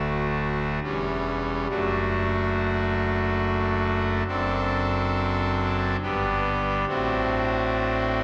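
Unhurried and rubato in a stately triple metre, this brief excerpt from a classical chorale-style piece carries a reverent, majestic mood. A solo pipe organ sounds its trumpet stop, brassy and bright with a romantic voicing, placed up front and spanning from deep pedal lows to the upper middle register. It rings out in a wet church reverb that lingers around 2.7 seconds, moving through a short chain of chords that closes on D7/A near 6.9 seconds.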